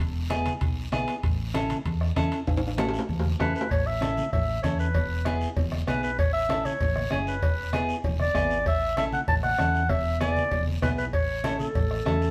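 A close-miked clarinet sits up front in a classical style, carrying the solo melody from 3.4 s over this joyful, sunny cumbia, cut from a longer piece. Beneath it, a dark, round hollow-body bass plays from the very start, joined by a clean, picked electric guitar accompaniment with a warm tone. The percussion builds a latin groove: a soft-beatered bombo, ringing metal-shell timbales and cowbell, a raspy guiro heard close, and bright, damped, low-tuned congas that sit compressed and saturated in the background. A drum fill at 2.5 s leads into the second section, where the harmony moves between E, E7 and A. The band plays live together in a moderate stone room, giving the sound a lively, natural ambience.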